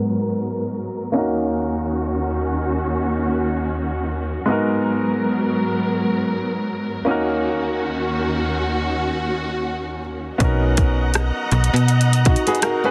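Sensual and moody, this contemporary R&B piece at 81 BPM with a light swing opens on lush, vibrato-laden bowed strings and a clear baby grand piano, both low-passed, moving through G#m9 and D#m7 under a filter sweep, until at 10.4 seconds a snappy, digital FM bass and an up-front trap kit of hard-clipped kick, metallic hats and rim clicks arrive on a Bmaj7, with a warm fingerpicked flamenco guitar slipping in at 12.5 seconds, within light reverb and a dense, heavily limited modern master.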